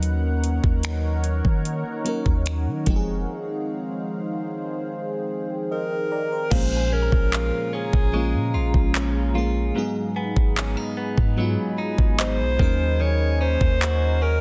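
Late-night and sensual, this contemporary R&B passage, cut from a longer piece, opens on a lush, dreamy FM electric piano with a soft pad layer and chorus, set over a deep, moody ambient pad whose chorus, built-in reverb and sidechain pumping give it a breathing glow. A round, sine-like 808-style bass sits up front beside an electronic, produced drum kit of knocking kick, metallic hi-hats, finger snaps, handclaps and crash, with soft clipping on the snare. A break arrives at 3.3 seconds, the electric piano slips in a short fill, and at 5.7 seconds an alto saxophone takes the solo melody in a jazz style, with light vibrato, scooped notes and tape echo. From 6.5 seconds the hi-hats are muted while a clean, direct-recorded electric guitar picks compressed arpeggios and a woody, mallet-like synth pluck with phaser, chorus and tape echo glints in the background. The chords move through Ebm7, Fm7, Bbm7 and Abm7, and the dry, dense, heavily limited master keeps the whole mix close and intimate.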